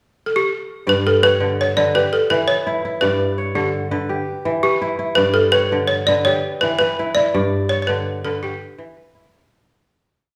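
Hypnotic and warm, this short West African traditional piece for balafon and kora moves at 111 BPM in a straight 12/8, centred on G lydian as G and E minor alternate beneath it. The woody, buzzing balafon, played with hard rubber mallets and close-miked, opens at 0.3 seconds with a dry, up-front melody built from song-like motifs, while the fingerpicked kora enters at 0.9 seconds with a crisp, ringing interlocking ostinato of arpeggios. Set in a reverberant recital hall, the music fades out between 7.3 and 9.5 seconds, the kora ringing on until 10.4 seconds.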